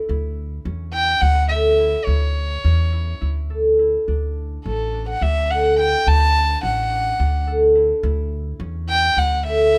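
Set in a restless 7/8 at 212 beats per minute counted in eighths, with a straight feel, this contemporary chamber piece in D major has a shimmering, unsettled mood and is cut from a longer work. A concert harp opens at 0.0 seconds with fingerpicked arpeggios in a middle register, its acoustic tone warm and ringing and placed up front. An upright bass joins at 0.1 seconds, plucked on gut strings with a woody, thumpy, dark sound that anchors the low end. At 0.9 seconds a single bowed violin enters with the melody, played sul tasto with a soft attack, giving a pure, floating, slightly boxy tone that sits close in the mix. The harmony moves from A over D to D major seventh and back to A over D, all captured with close, detailed microphones and a light reverb.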